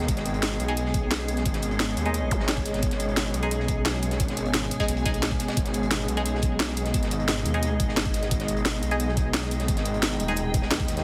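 Futuristic and mechanical, this excerpt of dark technical drum and bass at 175 BPM sits on a G# minor chord, with an overdriven knocking kick and an up-front drum and bass kit of cracking snare and bright hats, a gritty breakbeat kit with a high-tuned snare tucked behind them, a thick detuned saw bass pumping under sidechain, an eerie metallic drone and a cloudy, evolving granular pad hovering in the background, nasal band-passed chord stabs colored by phaser and delay, and a faint zap at 2.3 seconds, all in a lush hall reverb with a heavily compressed, radio-like sound.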